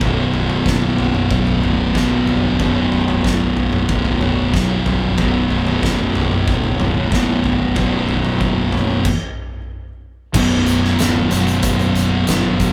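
A thick fuzz guitar sits up front, its distorted, picked riff driving this ominous, hypnotic stoner and doom metal passage cut from a longer piece. A second fuzz guitar plays in the same low register further back with a darker tone, while a fingered electric bass adds a bright, growly, overdriven fuzz beneath them. An oversized, low-tuned acoustic drum kit fills a big, pumping room with a boomy kick, fat snare, toms, hi-hat and crash, its sound saturated, gritty and placed up front. The groove is straight, resting on a single minor chord. The band stops from 9.1 to 10.3 seconds, then a new section begins at 10.3 seconds and runs to the end at 12.7 seconds. Light reverb gives the feel of a band playing live in one room.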